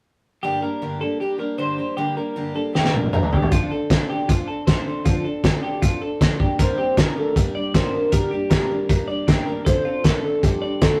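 A straight 4/4 pulse at 156 BPM drives this bittersweet, wistful stretch of jangly indie pop in G minor, cut from a longer piece. A picked steel-string acoustic guitar with a dreadnought body picks out accompaniment from 0.4 s, alongside a bright, twangy twelve-string electric guitar that spins clean, compressed arpeggios high above it. At 2.8 s a cloth-damped, thuddy drum kit arrives with a fill and sits up front, its fat snare, tight kick, hi-hat and toms sounding lo-fi, muffled, gritty and saturated with a rolled-off top. From 6.6 s a soft, round synth lead carries the melody, its detuned triangle and sine tones layered with a sub octave and coloured by chorus, phaser and vibrato for a dark, sustained voice. The harmony moves between Gm and Dm7, and the whole take has the light reverb of a rough rehearsal-room recording.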